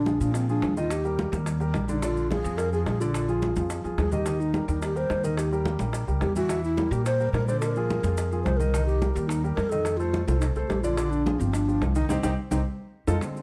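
A close-miked alto flute carries the melody with an airy, hollow straight tone and a crisp attack, floating over a brisk Afro-Cuban jazz groove at 214 BPM in 4/4 with a straight feel, centred on Bb mixolydian. Up front, a woody pizzicato upright bass with steel strings gives the low end a bright edge, while a grand piano supplies intimate accompaniment with long sustain and audible action noise. Ringing congas played with soft hands and round, low-tuned bongos with a compressed, saturated colour sit in the background, and grainy maracas add a close, quiet texture. The harmony moves through Bb7, Eb, Edim, Cm7 and F7, and the band hits a shared accent from 12.1 to 13.2 seconds. Light reverb and a dark production give this sophisticated, danceable passage, cut from a longer piece, a mellow glow.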